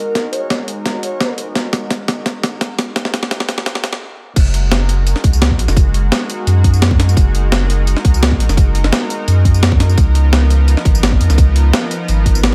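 A deep, round sine sub bass lands up front at the drop at 4.4 seconds, together with a tight, layered electronic kick, giving this uplifting slice of liquid drum and bass its weight. Before that, a build-up pairs a gritty, pitched-up breakbeat kit fill of snare, hi-hat, tambourine and crash, set in studio reverb, with a filter sweep on a thick, detuned sawtooth pad that pumps under sidechain and shimmers with chorus. A breathy, flute-like lead with vibrato, cassette-tape wear and dub echo sounds only until 1.3 seconds, and a brief stop comes just before the drop.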